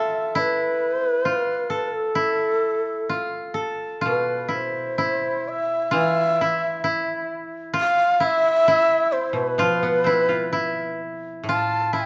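A dark, mellow recording set in a moderate recital hall reverb opens this austere, solitary excerpt of Japanese chamber music, moving in a rubato 2/4 at around 65 BPM. An up-front, breathy bamboo shakuhachi carries the melody with vibrato, tongued notes and softened highs, while a dry, woody koto played with fingerpicks sits close beside it on a second line. A lower koto accompaniment plucks briefly at the start, pauses, and returns at 4.1 seconds to support the pair through to 12.1 seconds.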